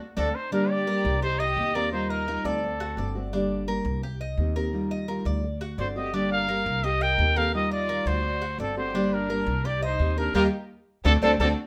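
A sultry Cuban son and guajira excerpt in G minor at 171 BPM, where a breathy, whispered trumpet carries the melody with vibrato from 0.2 to 3.2 seconds and again from 5.8 to 11.5 seconds, shadowed by a lush bowed violin section sitting in the background. Underneath, a dark, full-bodied fingerpicked nylon-string guitar and a metallic, picked Cuban tres spinning arpeggios play throughout, while a woody, thumpy pizzicato upright bass sits up front. The chords cycle through Gm, Cm7, Ebadd9 and D7 in moderate studio reverb, with band accents at the opening and from 10.3 seconds.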